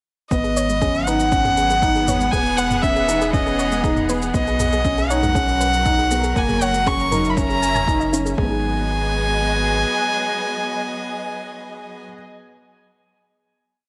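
Piano and strings electronica in G# minor at 119 BPM, moving and melancholic, where a close, nasal, gut-string violin sings a motif-based melody up front over lush, vibrato-rich string chords and a muted, felt-dampened upright piano ostinato with a mellow, intimate tone. Beneath them, a round sine sub bass holds sustained roots while a deep, tape-tinged four-on-the-floor kick and a restrained electronic shaker-and-low-tom pulse drive the drop, with the strings, sub and a soft, dark background pluck all pumping to the sidechain; the pluck's chorused, tape-echoed 12-step arpeggio loop drifts against the bar. At 8.4 seconds the beat falls away and the violin, strings and piano ring out a final G#m7 chord to about 12 seconds, bathed in a moderate concert hall reverb.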